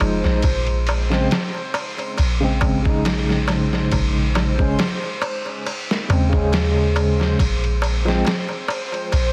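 A heavily compressed, radio-like sound with vinyl crackle and light reverb frames this melancholic, cinematic trip hop fragment, cut from a longer piece, in Bb minor at 69 BPM with a lightly swung feel, holding a Bbm9 chord until the harmony falls away at 7.4 s. A barky tine electric piano through a combo amp carries the accompaniment with tremolo and tape echo until 8.3 s, over a deep, round 808-style bass and a pitched-down, muffled sampler-style drum kit that enters at 0.2 s with a thumpy kick, ride cymbal and medium-tuned snare. A crisp metal-shell darbuka played with hard hands sits close, while a reversed, detuned, granular texture swells dreamily in the background.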